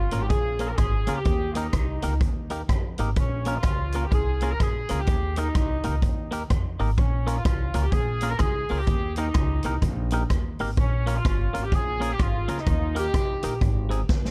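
An up-front, swinging big-band drum kit drives this mischievous, energetic ska cut at 126 BPM, with its boomy kick, medium-tuned snare, rim clicks and hi-hat sounding natural in a big room, and closing on a drum fill at 14.1 seconds. The eighths swing in 4/4 while the harmony in B-flat Dorian rocks between Bbm and Eb, landing on Ab at 13.6 seconds. A tight, clear horn section with light vibrato and a vintage pop character carries the melody, touched by analog delay. A twangy, picked electric guitar adds compressed, clean accompaniment with its own analog delay. Beneath them, a woody, dark pizzicato upright bass anchors the low end, and the overall mix stays dry in this short excerpt from a longer piece.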